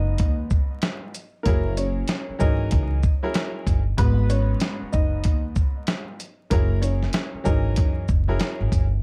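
A mellow, dark upright piano melody with tape echo opens this reflective yet tough boom-bap hip-hop fragment over a clear, short-sustained baby grand piano and a woody pizzicato upright bass, with a gritty, compressed sampler-style soul drum kit of thumpy kick, medium-tuned snare, hi-hat and shaker arriving up front at 0.2 seconds on swung sixteenths, the whole set in a dry, dusky mix hazed with vinyl crackle.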